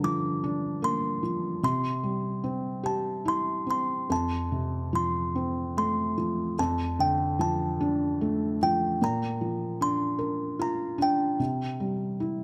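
Close, detailed microphones catch a moderate recital-hall reverb in this short excerpt of a tender, innocent lullaby in F major, played at 74 BPM in a rubato 3/4 and tuned to A4 = 436 Hz. A large, slightly out-of-tune music box plucks a delicate, tinkling melody between G5 and D6, dry and full, over a felt-muted upright piano whose soft, mellow chords sit up front with audible action noise. Both parts play together throughout the 12.4 seconds, moving through Gm7, C, F, Dm/F and Bb before settling back on C.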